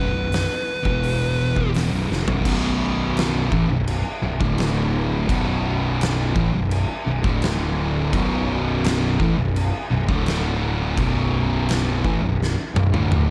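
An oversized, low-tuned acoustic drum kit sits up front from 0.3 seconds, its punchy kick, fat snare, dark cymbals and toms sounding saturated and gritty in a pumping stone room, with fills marking the shift into the main riff and closing this ominous, brooding stoner and doom metal excerpt at 84 BPM in B minor. A pair of thick, dark fuzz guitars churn through the riff in the background over a fuzz-laden, overdriven picked bass, moving between B5, E5 and D5 power chords before settling on B minor. A short fuzz lead guitar melody with delay sounds only until 1.7 seconds, and a bright, double-tracked, compressed distorted guitar joins the riff at 2.4 seconds, all within a dry, dark production.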